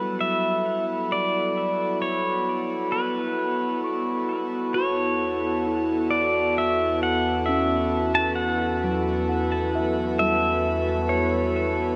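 Ambient and melancholic at 66 BPM, this reflective fragment of a longer piece sets a bright, twangy pedal steel guitar melody, played with fingerpicks, slide and volume swells through delay, over a breathy pad that fades in across the full 12 seconds, while muted, felt-like synth keys arpeggiate darkly in the background and fade out, a pure, glassy glass harmonica shimmers faintly, and the Em to Aadd9/E harmony hangs in a vast cathedral reverb with a cassette tape character.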